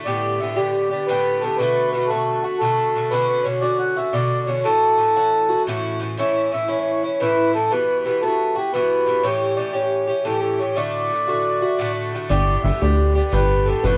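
A picked Irish bouzouki with metallic double strings opens this lively, cheerful Celtic slip jig in 9/8, joined almost at once by a reedy, dark accordion carrying the melody up front over chords such as Gadd9, Bmadd9 and A7, before a punchy, wave-folded analog bass enters at 12.3 seconds, all set in a small, wet room heard from further back, in a passage cut from a longer piece.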